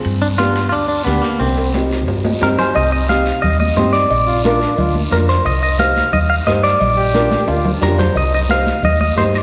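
A big, church-like reverb surrounds this driving, fiery cumbia excerpt in C minor at 178 BPM, where a twangy, spring-reverbed clean electric guitar carries the melody up front over a round, punchy muted electric bass, woody upright piano accompaniment, high-tuned congas, a raspy guiro and very quiet ringing timbales and cowbell, with a bright trombone adding a vibrato second line from 4.3 to 7.7 seconds.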